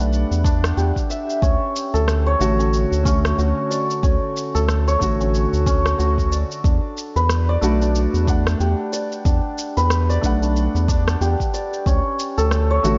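A dark, softly lit mix in light small-room reverb carries this meditative, earthy organic downtempo piece in E dorian at 92 BPM with a swung 16th feel, where shimmering santur arpeggios with delay ring up front over a felt-muted upright piano coloured by 12-bit sampler grit, sidechain pumping and delay, a round, tube-saturated analog bass that also pumps, electronic shaker and rim click, and a deep electronic kick that enters at 0.4 seconds and drops out at 12.0 seconds, all moving between Em7 and Dmaj7 in this section cut from a longer piece.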